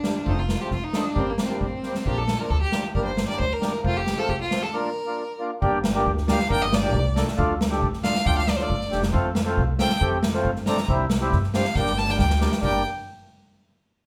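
Klezmer with a festive, soulful mood, in a straight 2/4 that gradually speeds up: a clear, smooth violin carries the bowed melody with vibrato over a reedy, rich accordion accompaniment, both up front, while a woody, thumpy pizzicato upright bass joins at 0.3 s. The street-band drum kit, with a boomy kick, medium-tuned snare and hi-hat, sounds airy and polished, adding fills along the way, including a longer one near the end. The band plays live in one room with reverb, pausing for a brief break at 4.7 s before moving into a new section at 5.6 s in this cut from a longer piece.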